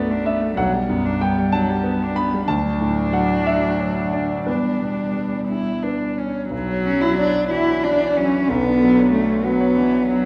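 Cello, viola and grand piano enter together in this longing, reflective neoclassical excerpt in B minor, moving in a rubato 6/8 at around 57-65 BPM, tuned to A4 = 441 Hz. The dark, up-front cello carries a second line with vibrato and a soft, airy sul tasto bow, while a single rich viola with light vibrato and the warm, present piano, its notes ringing with long sustain, provide accompaniment through chords such as Bm7, Gmaj7/B and Dmaj7. The close, intimate strings sit in a wet recital hall reverb, and the harmony settles on Bmadd9 at 6.5 seconds for the final stretch.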